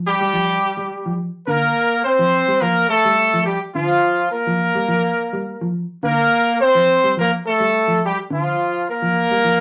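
A lightly swung 16th-note groove at 106 BPM in 4/4 drives this defiant afrobeat passage in G minor, cut from a longer piece, where a bright, tight horn section carries the pop-style melody up front with vibrato and octave doubling, while a mellow, clean, fingered electric guitar plays dark arpeggios further back over chords moving between Fsus2 and Gm7, captured as a rough rehearsal-room recording in a wet small-room reverb.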